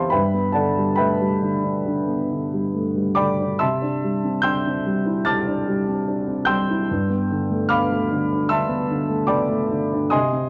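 The recording carries the worn, warbling character of old cassette tape, with a warbly pitch drift that makes the sound waver, set in a moderate studio reverb. Within that aged frame, a solo grand piano sits up front with a warm, natural tone, ranging from G2 up to A6. The music is classical and impressionist in style, luminous and serene, played in 4/4 with a loose, rubato feel. The harmony moves through Gmaj7 at the start, C69 at 3.6 seconds and Gadd9 at 6.9 seconds. At about 10.5 seconds long, the passage is a short section lifted from a longer piece.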